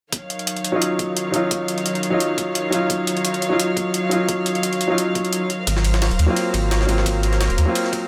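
A clear, up-front baby grand piano colours this melancholic, lush stretch of liquid drum and bass, entering at 0.7 seconds with accompaniment in its middle register, softened by a low-pass filter and trailed by delay. Beneath it, a warm chamber string section holds sustained chords from the start, bowed sul tasto with light vibrato and a soft attack, sounding intimate and close while sidechain pumping makes the ensemble breathe with the beat. The drums are gritty, pitched-up and compressed with a tape-warm character: a sampler-style hi-hat and a thumpy, high-passed kick run at 173 BPM in 4/4, with a gentle swing on the sixteenths. At 5.7 seconds the harmony shifts from Ebm9 to Ab13 in Eb dorian, and a deep, round sine sub bass arrives up front alongside an overdriven jungle kit of hi-hat, ride cymbal and a high-tuned snare, each of them high-passed. Light reverb lends the whole a subtle sense of space, and the piece sits slightly below standard pitch, with A tuned to 436 Hz.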